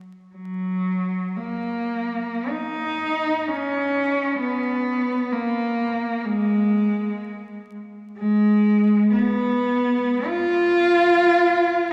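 A long church reverb, lingering about 3.5 seconds, surrounds this recording, and a vinyl crackle runs beneath it, lending the sound an aged, nostalgic patina. This is a serene classical fragment in free time, cut from a longer piece and played by a single unaccompanied cello tuned to A4 = 441 Hz. The bowed cello enters at 0.4 seconds and carries the expressive solo line until 11.9 seconds, moving between Gb3 and E#4. Its tone is warm and sits up front, yet the church's reverb gives it a distant glow. Rich vibrato and gliding portamento shape each phrase, giving the playing a tender, wistful character.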